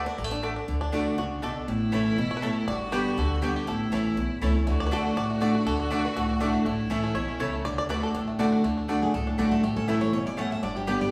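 This lively, rustic bluegrass excerpt has the feel of a band playing live in one room, with small room ambience and a wet large studio reverb around it. At 241 BPM in straight 4/4 and D major, it moves through D, A and G chords. The twangy, percussive banjo, played with fingerpicks, carries the melody and takes a solo from 0.7 to 8.6 seconds. A full-bodied dreadnought guitar supplies picked accompaniment with audible finger squeak, while the mandolin adds woody double-string stabs and the upright bass plays pizzicato underneath. A clear, focused fiddle with light vibrato plays a close second line until 8.5 seconds. At 9.0 seconds a bright, up-front parlour guitar joins the banjo on the melody for the closing passage.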